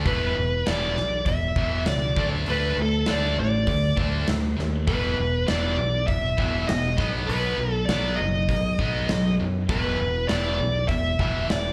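Heard through a club PA with small-room ambience, this driving, aggressive hard rock excerpt sets two bright, picked overdriven rhythm guitars churning a riff, one sitting in the background, over a growly, up-front fingered bass and a dark, smooth big-room drum kit with a punchy kick and medium-tuned snare, while a bluesy lead guitar, warm with distortion and analog delay, carries the melody up front over chords moving from E5 to D5, back to E5, then to B and home to E5.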